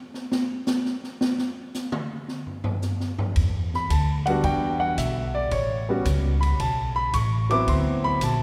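Warm and playful, this swinging jazz piano trio excerpt at 111 BPM opens with the acoustic drum kit alone, its dark cymbals, high-tuned snare and boomy kick moving across hi-hat, ride and toms. A woody pizzicato upright bass joins at 3.4 seconds, and a natural-sounding baby grand piano follows at 3.8 seconds, taking the melody over Em7, Aadd9 and D13 chords. All three instruments sit up front, while a long, wet church reverb adds a spacious, resonant glow to the sound.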